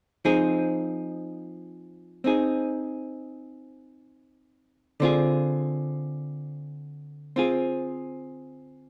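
A dark, clean, hollow-body archtop guitar, miked and amplified and sitting up front, plays picked accompaniment chords from 0.2 seconds, moving from Fm7 to Dm7b5 at 5.0 seconds, in a smoky, melancholic slow jazz excerpt at 51 BPM in 4/4 with a swung eighth-note feel and moderate studio reverb, captured as a band playing live in one room.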